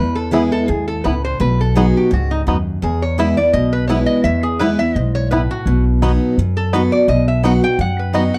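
A nasal, metallic lap resonator guitar carries the melody with fingerpicked slide lines bathed in plate reverb, out front in this driving, virtuosic bluegrass excerpt at 169 BPM in E major, swung on the eighths and tuned slightly flat to A4 = 438 Hz. A bright, full-bodied jumbo steel-string guitar picks the accompaniment while a woody, thumpy pizzicato upright bass anchors the low end, both up front, and a twangy, percussive banjo joins with arpeggios at 0.3 s. The harmony moves between E and B under a dark production with moderate studio reverb.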